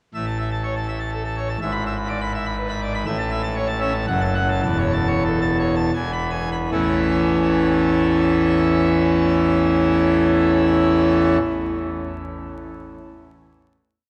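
In a straight triple metre that broadens from 2.3 seconds, this brilliant, jubilant classical organ toccata has a solo pipe organ on full organ, its majestic mixtures and baroque voicing sitting up front with a crisp chiff, rippling figuration and a second figure. The passage lands on a final chord at 6.7 seconds that rings out through a wet cathedral reverb. A worn, warbling old-tape character with vinyl crackle and pitch drift colours the sound.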